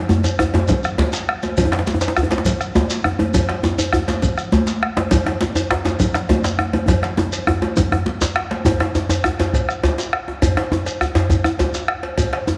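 Powerful and earthy, this short cut from a longer West African traditional piece sets a drum ensemble moving in 12/8 at 136 beats per minute, counted in dotted quarters with a straight feel. A deep, dark bombo sits close and dry beneath two medium-tuned djembes fitted with metal rattles, one struck with hard hands in a live room and the other close and up front. High-tuned congas with a thin skin add a bright, compressed and saturated edge until they drop out at 8.6 seconds. A grainy, band-limited shekere lends a mellow, vintage texture, while a metallic cowbell rings in a small room. A drum fill runs from 6.9 to 8.7 seconds, leading into a new section, and the whole ensemble sits in a wet echo-chamber reverb with a long tail.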